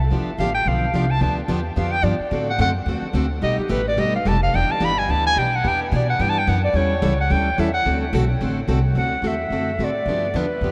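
A huge, wet reverb places this lively, playful slice of acoustic string swing in a vast, echoing space. Up front, a woody, thumpy upright bass on gut strings plays pizzicato, while a picked parlour steel-string guitar with fresh strings supplies the chords. A soft-attacked clarinet enters at 0.4 seconds and carries a jazz-style solo with vibrato through the first 9 seconds.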